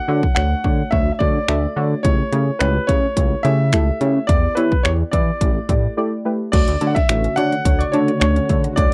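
A clear, intimate concert grand piano opens this upbeat, euphoric dance-pop fragment, carrying the melody with a slapback echo, audible action noise and long sustain. Almost at once a deep, mellow chord stab enters beneath it, soft and warbling with a vintage, detuned character, chorus and sidechain pumping. A glossy, retro synth bass with a filter pluck and chorus sits up front and pumps with the sidechain, and an electronic pop drum kit joins with a punchy kick, metallic hi-hats, finger snaps and crash cymbal. After a short break at 6.0 s, the second section arrives at 6.5 s with an airy, evolving resonant pad in the background, swelling through its filter, along with a very quiet, woody, mallet-like synth pluck playing arpeggios. The harmony moves through major seventh, dominant seventh, minor seventh and suspended chords, all in a dry, close 1970s-style studio sound with light reverb.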